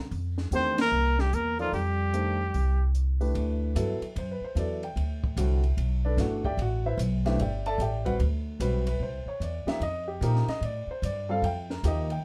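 A swung 4/4 at 148 BPM drives this hypnotic, searching modal jazz excerpt: a woody, thumpy pizzicato upright bass sits up front, while a compact cocktail kit with a high-tuned snare, punchy kick, hi-hat and ride stays dark and rolled-off in a small room. Over a warm grand piano, a clear, close-miked trumpet with light vibrato states the melody as a subtoned bass clarinet adds a second line in the background, and the band hits an accent together before both horns drop out at 2.9 seconds. From there the piano, bass and drums carry on under light reverb, the harmony moving from F13sus4 to D13sus4 at 3.3 seconds and back to F13sus4 at 9.8 seconds.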